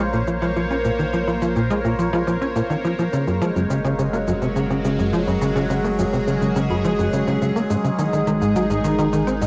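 A straight 4/4 pulse carries this mysterious, hypnotic stretch of ambient, sequencer-driven space music, where a tight, punchy sawtooth-and-square sequencer bass riff with ring modulation, lush chorus, analog delay and shimmer reverb sits up front over a deep, round analog bass, while a thumb-plucked concert harp rings out arpeggios through delay and shimmer, an evolving, detuned wavetable pad holds bright sustained chords moving from Bbmadd9 to Gbadd9 and Absus2 through phaser and shimmer, and tape-colored electronic shaker and woodblock fade in from 0.1 seconds, heard in a wet booth on a cassette home recording.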